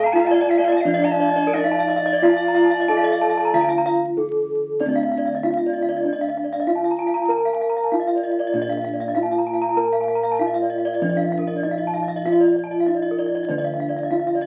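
Heard through the crackle of a very old 78 rpm record and a reverberant studio ambience, this brilliant, shimmering Balinese gamelan fragment moves in a straight 4/4 at 97 BPM in D pelog. A mellow, dark bronze metallophone carries the melody under padded disc mallets while an airy, chiffy alto recorder with vibrato traces a second line until 3.7 seconds. Two paired-tuned metallophones spin arpeggios, one dry and close under a wooden mallet and the other boxy under a horn mallet, as round, up-front bossed gongs hold the bass, and a new section follows a break from 3.9 to 4.8 seconds.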